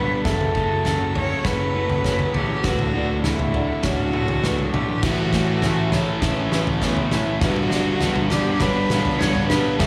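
Post-rock at 101 BPM in 4/4, this euphoric, cinematic excerpt from a longer piece is one continuous build-up, with a drum fill running its full length as the chords move from F#m7 through Dmaj7 and A to Gmaj7. A close, intimate cello carries the melody with light vibrato, a soft attack and a sul tasto tone, touched by analog delay. Underneath, a fuzzy overdriven electric bass and a compressed, distorted electric guitar riff sit in the background, joined at 5.0 s by a crunchy overdriven guitar playing its own riff with slapback echo. A clean, twangy electric guitar and a mellow felt-muted upright piano, its short sustain softened by thick felt and given slapback echo and analog delay, both play arpeggios, while a very quiet evolving wavetable pad holds detuned, morphing sustained chords with chorus. A loose indie drum kit, up front with its punchy kick, fat snare and dark cymbals, uses crash, kick, snare and toms, and a moderate concert hall reverb gives the whole mix a big arena scale.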